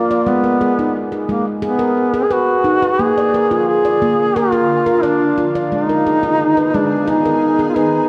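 Hypnotic and gentle, this short cut from a longer piece is meditative world music built around tuned percussion, moving at 88 BPM in a straight 4/4. A mellow duduk carries the melody up front from the start, its soft attack, vibrato and scooped notes giving the line a folk-style, solo voice. Beside it, a ringing handpan of nitrided steel plays fingertip arpeggios, also up front and bathed in dub echo like the duduk. At 3.6 seconds a shimmering, ethereal pad enters underneath with sustained chords, its detuned sine tones, octave-up shimmer and granular texture given chorus and its own reverb, yet staying dark and low in the mix. The harmony drifts from Abm to Bb and back to Abm, all set in a wet echo chamber with a long 2.2-second reverb tail that makes the whole mix feel echo-heavy.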